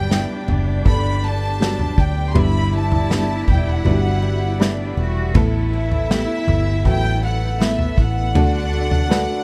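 A violin section leads this heartfelt pop ballad at 80 BPM in G major, bowing a pure, floating melody sul tasto over a lush cello section, a woody, slightly detuned upright piano, a brilliant plenum pipe organ in the background and very quiet, bright picked steel-string guitar arpeggios. From 0.1 s a polished acoustic drum kit played with bundle sticks adds a punchy kick, a medium-tuned snare and toms, while a round, foam-muted vintage electric bass sits up front. The chords move from Gmaj7 through Em7 and Asus2 to D, and studio reverb gives this emotional fragment a dark, warm glow.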